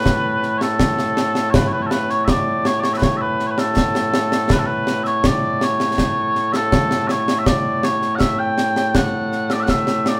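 Ceremonial and proud, this brief excerpt of Scottish pipe music in A mixolydian moves at 81 BPM in a straight 2/4, with mellow small bagpipes carrying a sweet, continuous, vibrato-laced melody up front from the very start while concert snare and bass drums, acoustic with bright cymbals, join at 0.1 seconds, the whole band playing live together in a stone room with a wet reverb.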